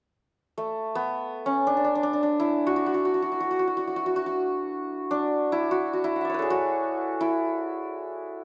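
Solemn and meditative, this brief fragment of an Indian classical piece in free time features a solo hammered santur, bright and shimmering and placed up front, ringing between A3 and F#5 from 0.6 s to 8.4 s within the moderate reverb of a small room.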